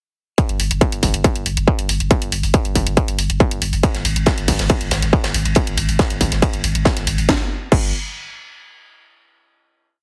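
Driving peak-time techno with a hypnotic, intense pull, built on an up-front, distorted four-on-the-floor kick and an overdriven programmed kit of cracking snare, pumping hats and crash, while a deep, saturated sub bass rumbles between the kicks and a dark, rolled-off acoustic breakbeat loop from a small room slips in at 3.8 seconds before the groove gives way to a final chord at 7.3 seconds, the mix pressed into a heavily compressed, radio-like sound with studio reverb.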